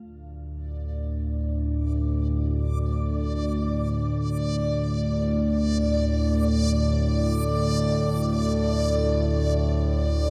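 A mellow, warbling analog drone opens this dark ambient excerpt at 0.2 s, sitting up front between D2 and A2 with a sawtooth-and-pulse-wave tone, pulse-width modulation and a resonant, chorused sheen that unfolds in free time. From 1.0 s a reversed, granular texture swells in high on D5, its detuned triangle sound bright and dreamy under built-in and shimmer reverb. A huge ambient reverb with an 8.8-second tail wraps the piece in a vast, ominous space, tuned to A4 = 441 Hz.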